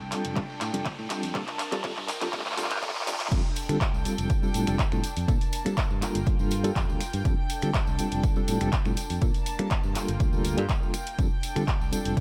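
Feel-good and sunny, this filtered disco house cut in F major moves at 122 BPM in a straight 4/4, opening with a short build-up where an electronic riser, a drum fill and a filter sweep lead into the drop at 3.3 seconds. A punchy, up-front electronic kick enters at 0.4 seconds beneath a layered house kit of bright hi-hats, handclaps, finger snaps and crash, while a tambourine sits in the background and a round fingered electric bass and a reedy electric piano with fast tremolo and phaser carry the groove. Soft-attack, floating symphonic violins hold sustained chords over F6/9, Gm7 and Bbmaj7, and the violins, bass, electric piano and tambourine all pump with sidechain and a low-pass filter in light digital reverb.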